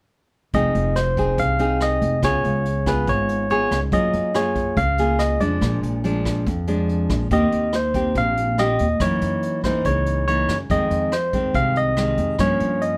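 A bright, barky tine electric piano carries the melody up front in this smooth, melancholic bossa nova excerpt in F minor at 142 BPM, tuned to A4 = 437 Hz. Beneath it, a warm, fingerpicked classical nylon-string guitar with fresh strings and audible finger squeak also sits forward, while a woody pizzicato upright bass holds the low end and a distant, roomy brush kit adds hi-hat, rim click and a punchy kick. Light reverb surrounds the group as the chords move from Fm7 through Db7, Gbmaj9, Bb7, Eb6 and Gb6, back to Fm7 and on to Gm7b5 at 12.4 seconds.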